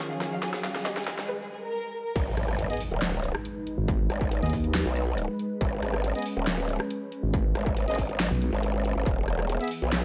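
Heavy wobble dubstep in G# minor at 139 BPM in a half-time feel, this menacing fragment opens with a lush violin section carrying the melody over a detuned supersaw pad pumping with sidechain, a dubstep kit with a huge snare and bright hats, and an electronic riser, before the drop at 2.2 seconds brings in a saturated growl bass and a distorted kick, with clear brass stabs following at 2.7 seconds and a nasal, resonant vowel-sweep wobble bass sitting up front from 3.8 to 8.5 seconds, all in a lightly reverberant room.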